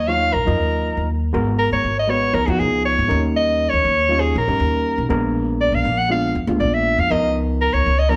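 Electric jazz fusion at 120 BPM in a straight 4/4, funky and driving, cut from a longer piece and tuned to A4 = 438 Hz. A clear, present soprano saxophone leads up front in a jazz solo style with vibrato and subtone, while a woody, growly pizzicato upright bass on steel strings sits thumpy and forward beneath it. An overdriven, gritty reed electric piano played through a combo amp enters at 0.1 s, accompanying over chords such as D#m9, G#m9, C#13 and A#7b9, all captured as a band playing live in one room with moderate large studio reverb.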